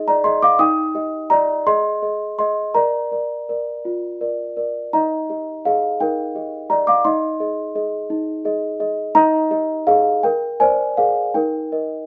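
Innocent and dreamy, this short classical lullaby for celesta unfolds in Eb major at a gentle 56 beats per minute in a lilting 6/8, its pulse loosened by rubato. A small celesta plays alone for the full 12.1 seconds, ranging from Eb4 to Eb6 with a bell-like, sweet tone whose soft felt hammers give it a mellow, dark roundness. Sitting up front, the instrument sounds delicate and smooth, its notes blooming into a wet stone room with about a second of reverb. The harmony rocks between Eb and Ab, touches Bb and a Bb7, and settles back on Eb at 11.3 seconds. Tuned slightly high at A4 = 444 Hz and captured as a live performance in one room, this excerpt is cut from a longer piece.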